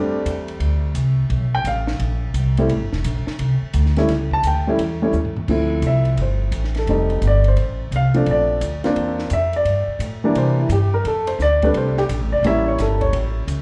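Moody, late-night jazz piano trio in swing, cut from a longer live club gig heard through the venue's PA, with a woody, short-sustain upright piano up front carrying the melody through plate reverb and slapback echo, a thumpy pizzicato upright bass on steel strings, and a compact cocktail kit sitting lower with a dark, rolled-off top, punchy kick and high-tuned snare, whose fill at 5.1 seconds ushers in a piano solo from 5.5 seconds.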